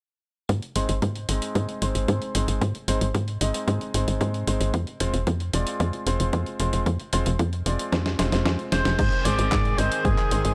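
A dry, gritty recording opens this melodramatic, danceable excerpt of italo disco at 113 BPM, built on a tight sawtooth sequencer bass carrying a filter sweep, a punchy analog kick with a high-pass filter, a compressed sampler-style kit of snare, hi-hat, handclaps and crash that plays a fill into the second section, and low-pass filtered stabs from a clear concert grand piano over Ab and Fm, until a breathy, distant alto saxophone with tape echo enters at 8.7 seconds and rich, bowed chamber strings join in the background at 9.0 seconds.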